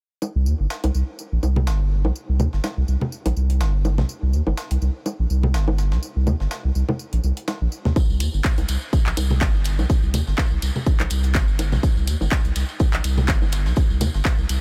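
A dry, close-sounding excerpt of clinical, hypnotic minimal techno in C minor at 124 BPM with a 16th-note swing, built on a deep, thick, saturated sine sub bass that pumps up front under a filter sweep, alongside gritty, compressed breakbeat sampler drums with a high-tuned snare and filtered, pumping hats, and tape-toned bongos and congas trailing analog delay, until a punchy electronic kick and a jingly acoustic tambourine arrive at 8.0 seconds, followed by a layered house kit of handclaps and hi-hat at 8.2 seconds.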